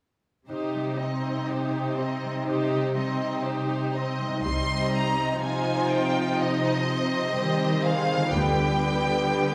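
Classical slow romantic movement for symphony orchestra in C minor, elegiac and solemn at a rubato 62 BPM, cut from a longer piece, where an up-front, smooth violin section carries the melody over a lush, expressive second violin line, a focused, close viola accompaniment and a background cello bass, all bowed with vibrato, along with ringing, fingerpicked harp arpeggios, before a rich double bass section joins at 4.4 seconds and the harmony moves from C minor to G7 over D at 8.3 seconds in the reverberant space of a scoring stage.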